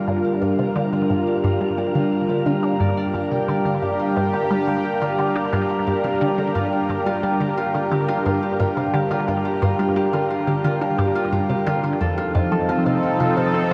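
A bright, full-bodied sawtooth pad with a sub octave and chorus carries sustained chords up front in this hypnotic, cosmic piece of sequencer-driven space music at 88 BPM in G minor, moving from Gm7 to F7 at 12.0 seconds, while a juicy, squelchy resonant blip pluck with phaser and delay repeats a riff below, a ringing, fingerpicked Celtic harp fades in with delayed arpeggios, and an airy, breathy wind-like noise texture fades in far in the background, all bathed in a huge ambient reverb with an 8.6-second tail and shimmer on the pad, harp and texture.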